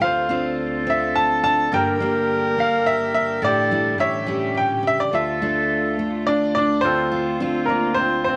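This heartbroken, reflective acoustic folk-pop ballad in 3/4 opens with a bright grand piano carrying the melody up front, its action noise audible, beside a full-bodied fingerpicked steel-string guitar with finger squeak and a mellow, distant clarinet tracing a second line. In the background, a chamber string section holds sustained chords with soft-attack, bowed sul tasto tone and light vibrato. Light studio reverb surrounds the music as the chords move from Dm7 through Gm, A7sus4 and A7 to Dmadd9, with Dm7 returning at 6.8 seconds in this passage cut from a longer piece.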